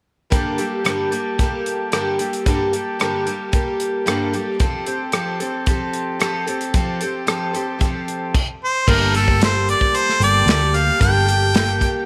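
A steady, straight 4/4 pulse at 112 BPM carries this brief, reflective cut from a longer folk rock and heartland rock piece in G minor. From 0.3 seconds a picked twelve-string acoustic guitar sits up front, full-bodied and shimmering with its octave-doubled strings and an audible finger squeak, moving from Gmadd9 to Fadd9. A natural country drum kit enters alongside it, airy and polished, with a punchy kick, a medium-tuned snare, rim clicks, hi-hat and crash cymbal. At 8.6 seconds a bright harmonica takes the solo melody, its light vibrato and scooped notes trailed by tape echo, just before a dark, round hollow-body electric bass joins at 8.9 seconds as the harmony returns to Gmadd9. Light reverb and small room ambience give the wistful track an intimate, studio-room feel.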